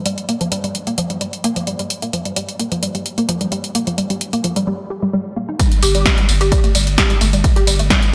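A straight 4/4 pulse drives this relentless, hypnotic peak-time techno excerpt, where a dark, woody wave-folded pluck riff with chorus, delay and sidechain pumping sits up front over a punchy, tape-warm drum kit of hi-hat, ride, snare and tambourine in gated reverb, until the drop at 5.6 seconds brings in a heavy, layered electronic kick and, at 5.8 seconds, a deep, thick saturated sub bass, set in a lush hall with a bright 1980s-style digital sheen.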